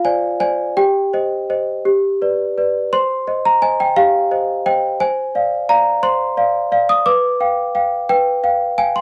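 Wistful and fragile, this short classical lullaby is carried entirely by a solo worn celesta, heard from the opening at 0.0 s until the fragment breaks off at 9.0 s. The gently rocking 6/8 metre has uneven beats, giving the cradle-song sway a slightly unsteady, human lean. The celesta's bell-like tone is sweet and delicate, with the hard felt hammers lending a bright edge, and its slightly out-of-tune quality adds to the aged, airy character. A brief opening phrase gives way to a longer second passage at 2.9 s, and the minor-leaning harmony drifts toward a dominant chord that feels unresolved as the piece is cut short. Captured in a dry, close studio recording with a 1970s feel and small room ambience, the instrument sits up front and intimate.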